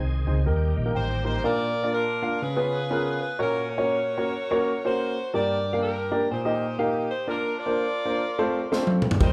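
Soulful and reverent, this short uptempo gospel cut in Bb major swings at 124 BPM, with a woody upright piano accompanying throughout and playing a fill as a shouting, lightly overdriven tonewheel organ with key click, chorus vibrato and slow rotary speaker holds chords alongside a round, punchy hollow-body electric bass before both drop out at 1.4 s and briefly return at the close, while a tight, clear saxophone section with light vibrato carries the melody from 1.0 s, and a tight acoustic funk kit with a high-tuned snare enters at 8.7 s with a fill, all set live in one room with moderate large studio reverb.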